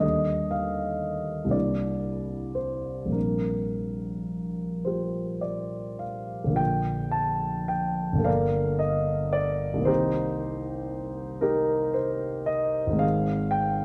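Dreamy and hazy, this brief excerpt of impressionist classical solo piano drifts in 6/8 at a slow 34-40 BPM, felt in dotted quarters, with a free rubato pulse in Bb major. A single grand piano with a present, up-front tone and long sustain spans G1 to A5, moving through lush colors such as Ebmaj7#11, C9 and Bb69 before settling into a second passage at 6.6 seconds that turns through Gmadd9 and Cm7 to close on Ab at 13.0 seconds. A wet recital hall reverb with a 1.4-second decay surrounds the instrument.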